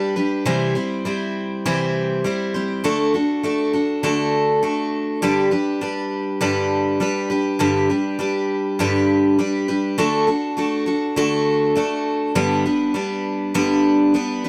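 A picked steel-string dreadnought guitar plays alone and up front, its fresh strings sounding bright as it moves through a simple C, D and G progression. This short country excerpt in a straight 4/4 feel has a nostalgic, down-home mood. Close, detailed microphones and light reverb keep the guitar intimate across its 14.5 seconds.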